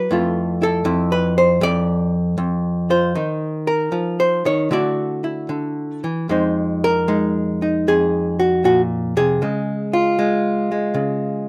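An archtop guitar, miked and amplified, opens alone with a clean, dark hollow-body tone, picked and up front, drifting through Fmaj7, Dbmaj13/Eb and Dadd9 in the first 6.3 seconds. This short solo jazz excerpt moves at 78 BPM in 4/4 with a rubato swing feel, its sophisticated mood shifting to Fm7 and then Db in the second half, spanning F2 to D5. Light reverb gives the electric tone a gentle sense of space.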